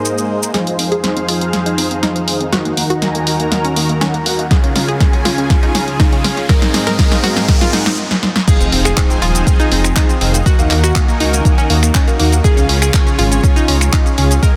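A straight 4/4 pulse at 121 BPM drives this progressive house excerpt, cut from a longer piece, with a driving, emotional mood and a chord loop cycling Abadd9, Fm7, Ebm and Db. From the start, a lush, thick unison pad with chorus, phaser and sidechain pumping holds sustained chords, while a soft, mellow supersaw plays low-pass filtered stabs with dub echo, and an overdriven deep house drum kit with a punchy snare, handclaps, finger snaps, hi-hat, shaker and crash cymbal keeps time. A round, bright analog pluck joins at 0.5 seconds with chorused arpeggios and dub echo, and filter sweeps on both the pluck and the supersaw shape a build-up full of drum fills. A very quiet riser climbs from 4.0 seconds, a deep, overdriven electronic kick enters up front at 4.5 seconds, and after a brief stop the drop lands at 8.5 seconds with an impact. There a dark, rumbling detuned saw bass arrives with sidechain pumping, under light reverb and a dense, heavily limited modern master.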